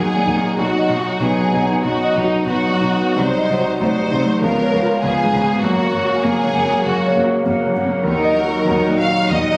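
Lush and passionate, this rubato classical passage, cut from a longer piece, sets a clear, up-front concert grand piano melody with deep bass against an expressive, vibrato-rich violin section, also up front, carrying a second line. Bright flutes and a distant, mellow clarinet add further lines, while focused violas supply the accompaniment, a very quiet French horn section holds sustained chords, and bowed cellos and, from 0.3 s, double basses anchor the bass in the background. Moderate hall reverb, a phone captured in the room, club-style reverb and compression shape the overall sound.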